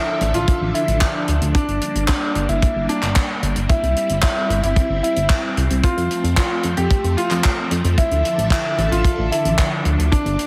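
Italo disco with a nostalgic, bittersweet mood, cut from a longer piece, where a brilliant baby grand piano carries a delayed melody over swirling, warbling string-machine chords treated with ensemble chorus and phaser, moving from Dmadd9 through Gm, C and F before returning to Dmadd9 at 8.0 seconds. A glossy, dark, chorused synth bass with a plucky filter and pulse-width modulation sits up front beside a tight, natural acoustic kick, while a small-room funk kit adds handclaps and hi-hat. Light reverb and heavy multiband compression give the whole a squeezed, radio-like sound.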